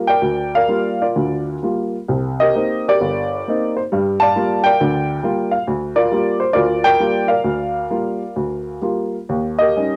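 Solo jazz piano with a cool, late-night mood, heard in a short passage cut from a longer piece. A single upright piano carries everything, sounding worn, woody and slightly detuned, with a short sustain. The playing swings its eighth notes over uneven beats and pushes and pulls the time freely, ranging from deep bass notes up into the upper treble. The harmony circles between Gm7 and Cm7 before turning to Eb7 at 9.3 seconds. The piano sits up front in a small booth with modest ambience, and the home cassette recording adds tape character and a faint mains hum.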